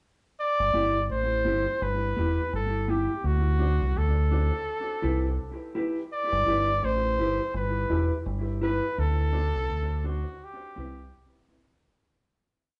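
A small room gives this short roots reggae piece a close, live-band feel, with a moderate studio reverb lending a touch of air. It moves at a relaxed 84 BPM in 4/4, swung on the sixteenths, and sits in G major with a laid-back, uplifting mood. A clear flugelhorn carries the melody up front in a pop style, shaping song-like motifs with vibrato and scooped notes. Beneath it, a deep dub fingered electric bass plays a round, punchy, melodic line with rests, while a mellow, clean electric guitar supplies compressed off-beat chops coloured by dub echo. The single verse cycles through G6, D7 and Cmaj7, and the recording fades out from 9.0 seconds until it ends at 11.8 seconds.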